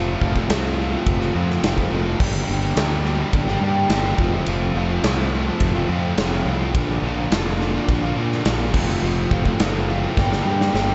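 Classic rock with a gritty, swaggering attitude, this short excerpt cut from a longer piece moves at a steady, straight-feel pace in four. An overdriven semi-hollow guitar carries the riff from the first moment, its double-tracked, picked tone sitting up front with a hollow-body character and a touch of spring reverb. Underneath, a fingered electric bass with fuzz and overdrive adds a round, punchy low end. A big acoustic rock kit joins at 0.2 seconds, with a punchy kick, medium-tuned snare, bright crash and ride cymbals and a roomy sound that stays up front, capped by a drum fill from 10.2 seconds. The harmony circles F, G minor and B-flat under a light studio reverb, and the overall sound is dark-edged, with little sparkle in the highest frequencies.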